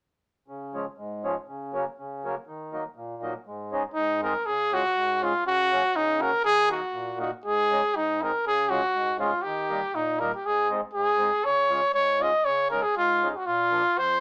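A mellow, reedy accordion opens this jolly, bouncy alpine folk dance at 120 BPM in 2/4 and Db major, its full, close-miked tone-chamber sound laying down the chords until a clear trumpet enters up front at 3.9 seconds with a soft-attacked, lightly vibratoed classical-style solo melody, both heard in a moderate studio ambience in this short cut from a longer piece.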